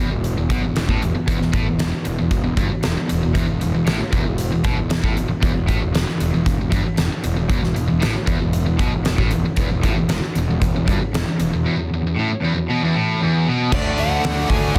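A driving, straight 4/4 groove at 116 BPM powers this energetic, forceful hard rock excerpt, with a huge arena drum kit coming in at 0.2 s, up front with a punchy kick, fat snare, crashes and hi-hat under a fuzzy, overdriven picked bass. Two bright riff guitars, one a cranked overdriven stack sitting in the background and the other high-gain and distorted, churn over a very quiet, moody analog pad of detuned sawtooth and sub-octave tones, all sitting on an E5 chord in a dense, heavily limited mix with moderate studio reverb. At 13.7 s the harmony moves to D as a dark high-gain lead guitar with plate reverb enters alongside a very quiet, double-tracked distorted guitar riff.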